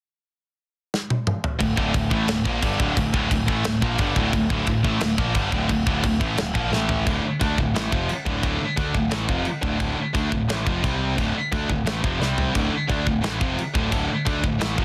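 A tight, up-front metal drum kit with bright china and crash cymbals, medium-tuned snare, kick and toms opens this dark, epic heavy metal excerpt in D minor at 175 BPM with a fill, joined at 1.6 s by a distorted, up-front high-gain guitar riff, a double-tracked high-gain guitar in the background that stops at 7.1 s, a scooped high-gain guitar set further back and a growling, overdriven picked bass, with light reverb and a dense, heavily limited master.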